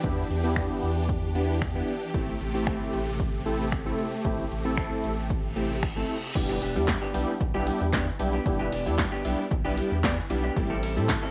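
Energetic and confident, this dance-pop excerpt moves at 114 BPM in a straight 4/4, set in E minor and circling between Em7 and Am7 chords. A big, fat polysynth with detuned sawtooth tones, ring modulation and a moving notch sits up front as the accompaniment throughout, pumping against the sidechain alongside a deep, thick saturated sub bass. Huge, lush supersaw chords hold sustained harmony until 6.3 seconds, while a dry, punchy analog drum machine drives the groove with kick, snare, hi-hat, handclaps, finger snaps and crash cymbal. A reverse cymbal in the background leads into an electronic impact at 6.4 seconds, where a slightly broken-up electric guitar through a small old amp enters with a picked, lo-fi riff touched by subtle chorus. Light reverb gives the mix a little space.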